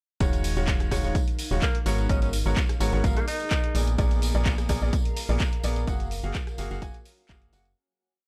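A four-on-the-floor pulse at 127 BPM drives this short, soulful and energetic piano house piece in Eb minor, with an up-front, punchy electronic kick joined by tape-warm programmed hats, handclaps and rim clicks from an analog drum machine, plus a tambourine sitting low in the mix. A bright, woody upright piano plays a rhythmic chord riff through analog delay, pumping against the kick alongside a hollow, organ-like FM bass whose dark, percussive notes follow the chord rhythm. From 1.2 seconds a cloudy, evolving granular pad drifts in the background with its own reverb and sidechain pumping. A tenor saxophone with light vibrato and a distant, roomy tone adds short solo phrases through analog delay between 1.6 and 3.8 seconds. The harmony moves from Ebm11 to Abm11, Bb7b9 and Gbmaj9, and the groove fades out from 5.2 seconds in a dry, gritty hardware recording with studio reverb.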